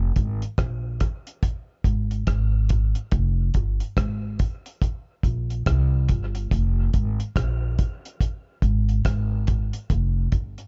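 A slow 71 BPM groove in 4/4 swings its sixteenths, setting a heavy, meditative dub reggae mood in F minor, tuned slightly sharp to A4 = 443 Hz. A thumpy, woody pizzicato upright bass on gut strings sits up front between F1 and C2, joined at 0.2 seconds by a cloth-damped, thuddy drum kit playing hi-hat, tight kick and rim click with a dry, rolled-off top. The production is dark and warm, with little reverb, and this short fragment of a longer piece stays in a single section.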